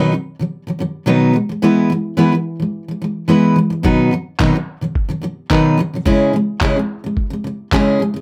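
A full-bodied, picked jumbo steel-string acoustic guitar sits up front and carries this carefree, heartfelt acoustic pop fragment, opening on its own and picking through a lightly swung sixteenth-note feel. At 3.8 s a lo-fi sampler-style kit joins with handclaps and a thumpy, muffled, pitched-down kick that sounds compressed and tape-warmed, as if re-recorded in a large room, before it drops out at 7.9 s. A modest small-room ambience surrounds the guitar, which rings on until the cut at 8.2 s.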